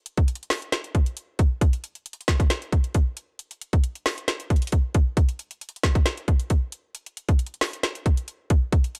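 An up-front electronic trap drum kit enters at 0.1 s with a hard-clipped kick, woody snare and metallic hi-hats in a melancholic, hard-hitting hip hop excerpt at 135 BPM in a half-time 4/4 feel, its tape-warm drums captured in a dry, gritty recording with little reverb.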